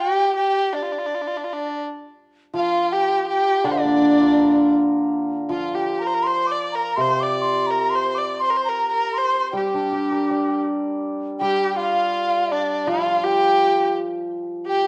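A large bamboo dizi and a single bowed erhu open together in this tender, wistful piece of traditional Chinese chamber music, moving in a free, rubato two-beat pulse. The dizi carries the melody with an airy, mellow tone, its buzzing membrane, soft attack and expressive vibrato set against rolled-off highs. Beneath it, the up-front erhu sings a smooth, even second line, rich in timbre and colored by vibrato and portamento. At 2.5 seconds a hammered dulcimer joins as accompaniment, its acoustic strings shimmering and ringing close at hand. The ensemble sits in a moderate recital-hall reverb with a dark, warm production, and the music moves into a new section at 11.4 seconds before this passage, cut from a longer piece, ends.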